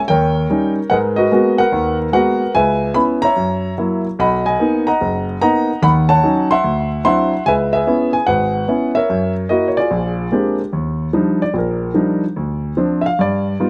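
Dry and close, with the intimate sound of an open-air setting, this short cut from a longer solo jazz piece puts a concert grand piano up front, its deep bass and audible action noise carrying a relaxed, warm swing at 147 BPM in B major through chords such as G#m9, Bmaj7 and D9 before it moves at 10.7 s into a new section that opens on Ebmaj9 and closes on G7b13.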